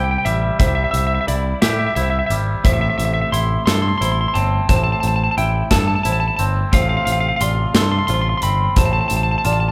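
A lightly driven lead guitar carries a soaring melody up front over a big rock drum kit with a boomy kick and a picked electric bass in this cinematic post-rock excerpt at a slow 59 BPM in 6/8, moving from C to Am at 2.6 seconds and F at 6.7 seconds. A twangy clean electric guitar and a felt-muted upright piano with audible action noise trace arpeggios, a very quiet pedal steel guitar holds sustained chords with volume swells, and a moderate hall reverb surrounds the sound.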